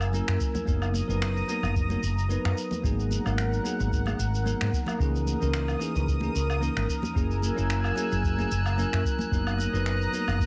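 Light reverb and a digital ambience frame this short cut from a relaxed, wistful sunset chillout track in C# dorian at 111 BPM, with a gentle swing on the sixteenths. A dark, growly fretless electric bass sits up front beneath a deep, dry electronic kick that enters at 0.4 seconds, while layered electronic woodblock, shaker and finger snaps mix with bright, close congas played with hard hands in the background; a bell-like tine electric piano with delay plays accompaniment, and a thick, warbling unison pad with chorus holds sustained chords through F#9, Bmaj7/F#, G#m9 and C#m69. At 7.5 seconds a calm, glassy texture of drifting overtones joins on a high F#6.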